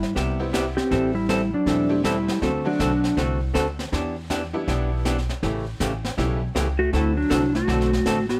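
Down-home and playful, this short cut from a longer western swing piece moves at a brisk 160 BPM in 4/4 with a swung eighth-note feel. A clean, compressed lap steel carries the melody up front, using slide and volume swells. It drops out at 3.2 seconds and returns at 6.8 seconds. Beneath it, a hollow-body archtop guitar, picked and miked through an amplifier, and a woody, thumpy pizzicato upright bass on gut strings sit prominently in the mix. A jangly, metallic tack piano adds vintage color in the background, while a jazz kit played with brushes, with a high-tuned snare and a boomy kick, keeps time from a small room. The chords move from Cmaj7 through Am7, D7, Em7 and A7 before landing on D7, all wrapped in light reverb.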